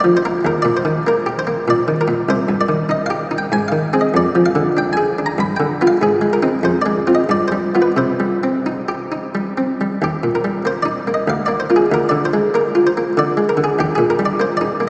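Bathed in the long, wet reverb of a cathedral-like space, this radiant, dance-like fragment of a baroque-style suite movement features a solo buff-stop harpsichord with a muted, lute-like pluck sitting up front, moving at 96 BPM in 3/4 with a rubato feel through C minor harmonies and turning to Eb major at 10.0 seconds.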